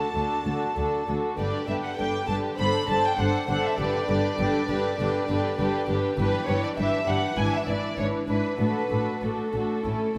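Classical-period music for string orchestra in a quick, spirited and cheerful 4/4 at 100 BPM, cut from a longer piece, moving from G major to D major at 6.2 s. Up-front violin sections carry the melody and a second line with a soft-attack, floating sul tasto tone, the melody adding a smooth top, while a rich viola section supplies the accompaniment and close, intimate cellos with light vibrato join a pure double bass section on the bass. A wet scoring-stage reverb with a 1.7 s tail adds space as the harmony passes through Em7/G and E7/G# to reach D/A at 8.6 s.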